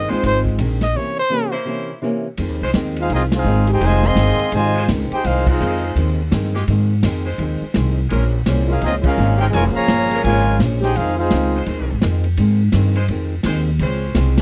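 A dramatic, brassy big band swing passage in F minor at 168 BPM opens with a clear, close-miked solo trumpet playing a brief line with light vibrato over upright bass and a dark, hollow-body archtop guitar, while a warm concert grand piano adds a short figure between 0.1 and 0.6 seconds. The woody, thumpy pizzicato bass sits up front through the whole cut, and the swinging drum kit, with a punchy kick, medium-tuned snare, hi-hat, ride and crash, keeps a polished, airy feel. An edgy saxophone section holds sustained chords underneath, and a break from 0.9 to 2.4 seconds falls within the trumpet solo, before the brass sections enter. At 3.0 seconds the trumpet section takes the melody up front, with the smooth-topped trombone section carrying a second line in the background, and band accents punch out at 3.3, 5.4 and 9.0 seconds. The harmony moves from Fm7 and C7b9 through Bbm7 to Dbmaj7, and the dry, close studio sound recalls 1970s recordings.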